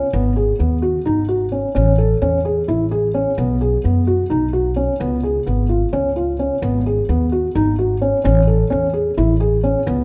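Set in a straight 7/8 at 259 BPM counted in eighths, this short passage from a longer piece of contemporary chamber music moves with a hopeful, playful lilt, tuned to A4 = 439 Hz. A felt-muted upright piano carries arpeggios from 0.0 seconds, its thick felt giving a dark, boxy, intimate tone with audible action noise close up front. Entering at 0.1 seconds, a pizzicato upright bass holds the low end with a woody, growly voice from its steel strings, also placed up front. Across the odd meter, the harmony cycles through G#m7, Amaj7, B5 and C#7 before returning to G#m7 and Amaj7. A wet recital hall reverb with a 1.5-second decay surrounds the pair, lending the small ensemble a sense of space.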